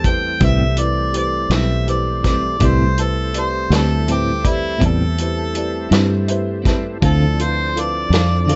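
Mournful and soulful, this slow blues excerpt in 12/8 at 54 BPM sits on an Am7 chord in A minor, with an overdriven harmonica carrying a distant, roomy solo full of scooped notes and light vibrato over a dry, up-front soul drum kit and a round, foam-muted fingered electric bass. In the background, a tonewheel organ holds smooth sustained chords through a slow rotary speaker and chorus vibrato, a slightly detuned, woody upright piano accompanies and adds a fill from 5.9 to 7.0 seconds, and a clean, hollow-body semi-hollow electric guitar with tremolo enters at 0.4 seconds. The dark production sits in a small room ambience.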